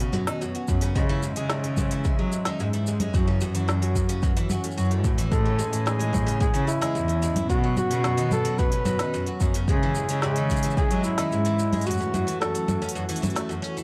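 Delicate and warm, this 110 BPM folktronica excerpt sets a bright, shimmering twelve-string acoustic guitar playing gritty, delayed arpeggios over a smooth, detuned sawtooth pad with chorus and tremolo in the background, a produced kit of woody snare, smooth hats, congas and shaker with overdrive, a deep, overdriven electronic kick and a rich, floating bowed cello bass that enter at 0.7 seconds, and a mellow, jazz-style flugelhorn solo with scooped notes and delay that arrives at 5.3 seconds, all in light reverb with vinyl crackle before a break at 11.9 seconds.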